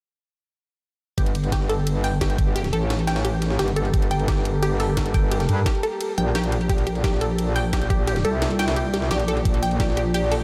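A metallic, wobbling bass sits up front in this dark technical drum and bass passage, distorted and overdriven with chorus, its aggressive FM tone pumping against the sidechain in the G1 to G2 range. At 174 BPM in G minor, the mood is mechanical and futuristic, with an overdriven, knocking electronic kick from 1.2 seconds joined by bright, overdriven electronic hats and a gritty, pitched-up breakbeat kit whose high-tuned snare, ride and hi-hats are high-pass filtered. A lush, punchy unison pluck plays arpeggios between G4 and G5, its detuned sawtooth tone carrying a moving notch and a tape echo. From 2.7 seconds a deep, moody ambient pad holds sustained chords in the background, mellow and detuned with chorus and its own reverb. The harmony moves from Gmadd9 to Bb at 6.7 seconds, and the whole mix is soaked in a dreamy cathedral reverb, heard here as a section cut from a longer piece.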